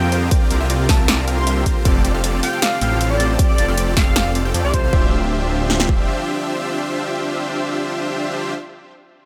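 Set in a light reverb, this dreamy, emotional future bass excerpt opens straight into a drop at 156 BPM in 4/4 with a half-time feel, in D minor. A thick, compressed supersaw plays a huge riff up front, with detuned sawtooth layers, a sub octave and vibrato, pumping against the sidechain. Beneath it, a detuned saw bass, lush and saturated with chorus, holds the low end until 6.0 seconds. Above, an airy, soft lead carries the melody through chorus, dub echo and sidechain pumping, its bright tone shaded by a noise layer and a moving notch, until it stops at 4.9 seconds. A very quiet symphonic string section sustains rich, biting bowed chords with light vibrato throughout. The layered, electronic drum kit hits punchy kicks, snares and hi-hats, while the harmony moves from C9sus4 to F69 and settles on Dm11 as the second section begins.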